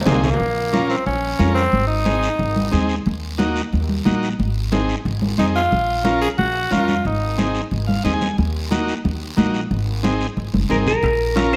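Set in a moderate recital-hall reverb, this fiery, danceable cumbia excerpt opens with a brief fill on background timbales and cowbell with a ringing metal-shell sound, as thick-skinned congas, a close, dry guiro and a woody, thumpy upright bass on gut strings settle into the groove. Up front, a gritty, punchy tenor saxophone solos with vibrato in raspy, edgy phrases over a buzzy vintage combo organ, which steps forward with a short fill at 7.7 seconds. At 10.7 seconds a twangy, clean electric guitar, picked and dressed in spring reverb and slapback echo, enters up front just as the cut ends.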